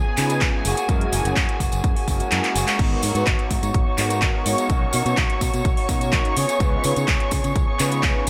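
A straight pulse from a punchy, up-front electronic kick drives this groovy, sensual filtered disco house excerpt, where a house kit of metallic hats, handclaps and crash cymbal, a background tambourine, a fingered electric bass, a lo-fi, slightly broken-up guitar riff, dark detuned synth brass with chorus and phaser, and veiled, muted symphonic strings with 12-bit sampler grit all pump with sidechain compression, as the kick drops out at 2.3 seconds for a drum fill from 2.4 seconds, over chords moving from C#7 to F#7, G#m7 and Bmaj7 in a light reverb.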